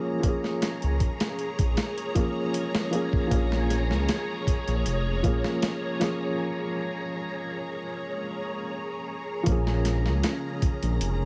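A deep, rumbling detuned saw bass sits up front from 0.8 seconds in this brooding, cinematic trip hop excerpt at 78 BPM in Bb minor, anchored on a Bbm7 chord. A gritty, compressed sampler-style drum kit with a thumpy kick and medium-tuned snare drives the straight 4/4 groove, while a soft, boxy felt-muted upright piano with audible action noise plays accompaniment through tremolo and tape echo. Full, vintage string-machine cellos hold slow-attack chords through phaser and ensemble chorus, vinyl crackle hangs over the mix, and a break at 6.4 seconds gives way to a new section at 9.5 seconds.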